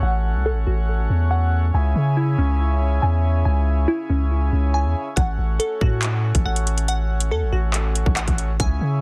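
Tense and cold, this half-time drill hip hop fragment at 140 BPM in 4/4 sets a mellow, reedy accordion holding sustained chords and a glassy, crystalline wavetable pluck, treated with chorus, phaser, delay and a low-pass filter sweep until 5.2 seconds, spinning arpeggios over a deep, up-front 808-style bass, moving between A6 and C#m before a drill kit of hard-clipped kick, metallic hi-hats and handclaps punches in at 5.2 seconds, all in a dry, dense, heavily limited modern master.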